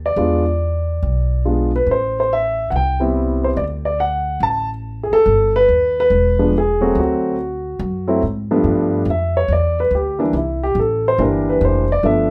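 Swinging eighths at 142 BPM in 4/4 drive this warm, sophisticated jazz excerpt, where a woody, thumpy pizzicato upright bass sits up front beneath an intimate grand piano whose natural tone carries audible action noise, both wrapped in a moderate club reverb as the piano moves through changes like E7b9, Am7 and D7 before taking a solo from 8.7 seconds over G7 and C7.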